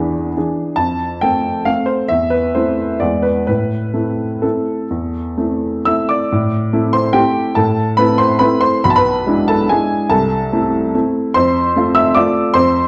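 Graceful and sparkling, this short classical piano waltz in A minor sways in 3/4 with a rubato feel between 121 and 152 BPM, as a solo upright piano with a woody, slightly detuned, vintage tone sits up front across 12.9 seconds, ranging from B1 to E6 through chords such as E7, F and Am, all bathed in a recital hall's wet reverb and a dark production.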